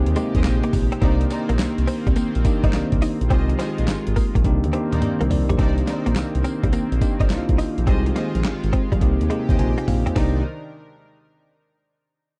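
Bouncy and slick, this new jack swing cut rides a gritty, compressed sampler-style drum kit with a thumpy kick, handclaps and tambourine sitting up front, with drum fills at 4.4 and 9.6 seconds. A smooth, gliding synth bass anchors the swung groove beneath a bell-like tine electric piano, a shimmering chorused pulse-width pad holding sustained chords, and a clean, direct-recorded electric guitar riff treated with ensemble chorus. A lush, distant studio string section adds stabs with tape echo, and the electric piano slips in a fill near the end, all set in a dark, dry production.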